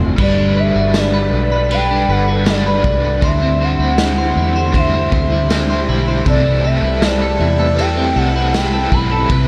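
Dreamy and floating, this dream pop excerpt drifts at 79 BPM in G major, moving through Gmaj7, D9sus4 and Am7/C over a light reverb and small room ambience. A punchy, foam-muted bass and a gritty, saturated garage drum kit with crash, ride, snare, kick and tambourine anchor the sound after a drum fill at 0.0 seconds, while a clean picked guitar plays arpeggios through lush chorus and digital delay and an overdriven, compressed guitar adds tremolo-and-chorus accompaniment. A swirling, phased string machine holds sawtooth chords in the background, and from 0.2 seconds a hollow, woody clarinet-like synth lead sings a mellow melody with vibrato, chorus and delay.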